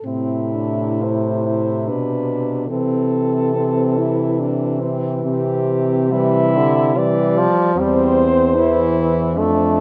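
Close, detailed microphones and light reverb frame this short excerpt from a longer classical piece for horn quartet. It is elegiac and yearning, in A minor at 70 BPM in 3/4, with uneven beats stretched by rubato. The four French horns sound together from 0.0 s to about 9.8 s. The top horn carries the melody between E4 and D5 with a warm, vintage tone and light vibrato, while a second horn sings a soft-edged line from G3 to E4 with a smooth top. The accompanying horn, moving between C3 and A3, has vibrato and sits distant and roomy, and a mellow bass horn, up front and gently wavering, holds the low end from E2 to C3 as the harmony passes from Am through Am/C to C and C/E.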